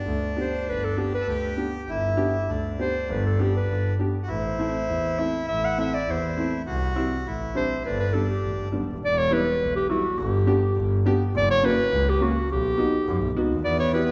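Klezmer in 2/4 at 102 BPM that gradually speeds up, festive yet soulful, with a warm, classical-style clarinet carrying the solo melody up front over a clear, bowed double bass with light vibrato, also up front, a dark, woody upright piano accompaniment, and a reedy, airy accordion second line that drops out at 8.7 s and returns briefly at 13.6 s, all set in the lingering reverb of a church or concert hall as the key shifts from G major to E dorian sharp4 at 9.0 s.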